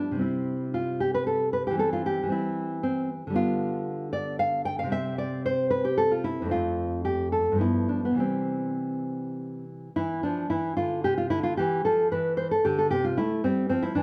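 This classical, baroque-style dance for solo nylon-string guitar has a radiant, dance-like character, moving in 3/4 at 113 BPM with a rubato feel in C major, tuned slightly low to A4 = 438 Hz. The guitar sits up front with a dark, full-bodied, thumb-plucked tone, ranging from F2 to G5, while a moderate recital-hall reverb lends a natural sense of space. The opening phrase travels through C, G7 and F before settling on C at 8.2 seconds, and a new passage begins at 10.0 seconds before this short excerpt of a longer piece ends on an open A fifth.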